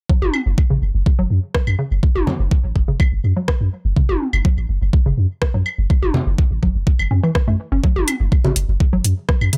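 An up-front, knocking electronic kick drives this sparse, cool minimal techno excerpt alongside a deep, punchy sine sub bass with a pitch-drop attack and sidechain pumping, a hollow, bouncy square-wave pluck riff with chorus, pumping and digital delay, prominent electronic toms, claves, congas and bongos with delay and a small-room character, and, from 1.5 s, a garage kit's metallic hi-hats and rim clicks, with the kick, hand percussion and kit each overdriven in a dry, close mix.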